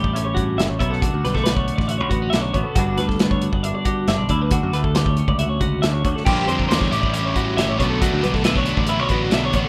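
This rough home demo has light reverb and a small-room ambience, which gives it a close, unpolished feel. It is a wistful, intricate piece of math rock and midwest emo in a straight 4/4. A warm twelve-string electric guitar plays compressed, clean arpeggios through tremolo, while a bright, twangy second twelve-string plays compressed, clean accompaniment with spring reverb. Underneath, a punchy, direct picked bass and an up-front acoustic drum kit carry the rhythm, the kit dark and smooth with a tight kick, a medium-tuned snare, hi-hat, crash cymbal and a rolled-off top. The chords drift from A6 through Bm9, Gmaj7 and Dmaj7. At 6.3 s a double-tracked, overdriven semi-hollow guitar adds a riff over a Bb69 chord before the progression returns to A6 and Bm9.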